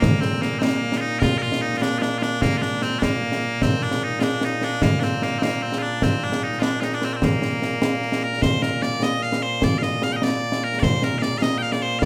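Loud, bright bagpipes carry the melody from the first moment, their piercing, continuous tone sitting up front as the lone melodic voice and spanning Bb2 to G5. This is proud, ceremonial Scottish pipe music in Bb major, moving in a straight 6/8 at 100 BPM counted in dotted quarters. A concert snare drum and concert bass drum play throughout, their acoustic sound close and up front, with a small-room character and dark cymbals. The band plays live in one room, bathed in a wet, large studio reverb. Cut from a longer piece, the passage runs through one section until 8.4 seconds and moves into a second that lasts to 12.1 seconds.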